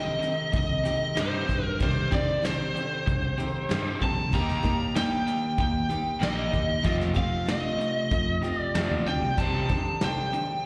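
A steady, straight 4/4 pulse at 95 BPM carries this short, wistful folk rock and heartland rock fragment in C dorian, cut from a longer piece and tuned slightly sharp to A4 = 443 Hz. A soft brush drum kit, dark and smooth with a tight kick, a medium-tuned snare and a rolled-off top, keeps time on hi-hat, kick and snare from 0.2 seconds, while a fingered electric bass with a warm, direct tone joins at 0.5 seconds. Underneath, a bright picked dreadnought acoustic with fresh strings picks out the accompaniment, and a raw, double-tracked garage guitar grinds through an overdriven riff. Up front, the lead guitar through a small cranked amp sings the melody with overdrive, slapback echo and digital delay. The chords move from Cm to Eb, then Fadd9 and back to Cm, and the whole passage has a dusty, live-gig feel, heard through a venue's PA with recital-hall reverb and a touch of studio ambience.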